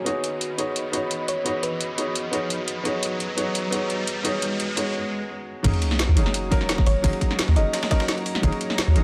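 Liquid drum and bass at 172 BPM with a dreamy, rolling mood, this short cut opens on a soft, intimate felt-muted upright piano, up front with audible action noise, low-pass filtering and tape echo, over an airy, breathy pad with chorus and a deep, round sine sub bass, while a drum and bass kit with a woody snare and metallic hats builds under a riser and a filter sweep on an analog synth pad. A tine-like FM synth pluck with chorus and tape echo adds brief melodic touches from 1.3 s, and after a short break the drop lands at 5.6 s with an impact, a tight overdriven kick and a gritty, compressed sampler-style kit with a fat snare sitting in the background. The harmony moves from C#9sus4 to G#9sus4 at the drop, all set in light reverb.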